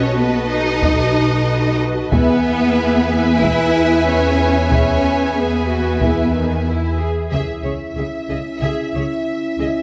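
Cinematic, epic orchestral film score at 92 BPM in 4/4 with a straight feel, set in C# minor, carrying a heroic, relentless mood through this short cut from a longer piece. A rich studio violin section carries the melody with expressive vibrato and a soft attack, while a second violin section adds a smooth-topped, lush line above it. Violas sound focused yet distant in the accompaniment, and a close, full-bodied cello section holds down the bass alongside woody double basses, all bowed with vibrato. A background string section holds soft, expressive sustained chords until 7.3 s, and a dark French horn section enters at 0.8 s with its own sustained chords in a classical style. A taiko ensemble struck with hard sticks drives the piece from 0.8 s, sounding as if in a small room, while a moderate scoring-stage reverb surrounds the orchestra as the harmony moves from B7 to E before settling on C# minor.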